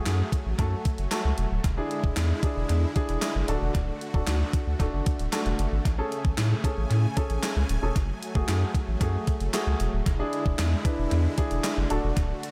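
An echo-heavy, lightly reverberant mix carries this upbeat, summery dance-pop excerpt at 114 BPM, where a warm, present baby grand piano, huge, lush detuned supersaw chords and a deep, thick, saturated sub bass pump with sidechain compression beside an up-front 80s digital drum machine of thumpy kick, handclaps, hi-hat and a gated-reverb snare with tape echo, over chords of F#madd9, E7, D and Amaj7.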